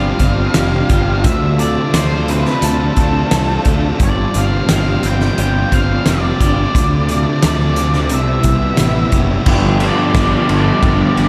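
A dark octave-fuzz lead guitar sings its melody through distortion and tape echo at the start of this blissful, wistful excerpt of shoegaze and dream pop at 88 BPM in G mixolydian, over a thick fuzz guitar riff with subtle chorus, a very quiet crunchy overdriven guitar, a growly up-front fuzz bass and an airy, detuned sawtooth pad glowing with chorus in the background, while a loose indie drum kit with a fat snare and punchy kick joins at 0.2 seconds and a bright, lo-fi, double-tracked garage guitar slips in at 9.5 seconds as the chords move from G7sus4 and Dm7 through Cmaj7 to G7, the whole mix soaked in lush hall reverb.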